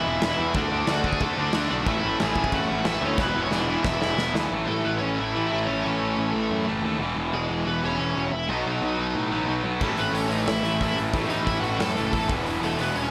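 This energetic, rebellious punk rock excerpt bursts in with an up-front, high-gain lead guitar carrying the melody over two distorted rhythm guitars riffing in the background, one compressed and the other overdriven, with a third, very quiet double-tracked guitar riffing beneath them. A growly, fuzz-laden picked bass enters almost at once, and the big rock drum kit follows, its punchy kick, medium-tuned snare, hi-hat and crash ringing in a dark, smooth big-room sound. A drum fill from 3.2 seconds leads into a half-time passage at 4.5 seconds, where the drums and the quietest guitar drop out, leaving the lead, the other two guitars and the bass over chords moving from A to E to B. At 9.8 seconds the drums and the third guitar return, and the full band drives back toward E. A light reverb sits over the mix, keeping the straight rush raw and bright.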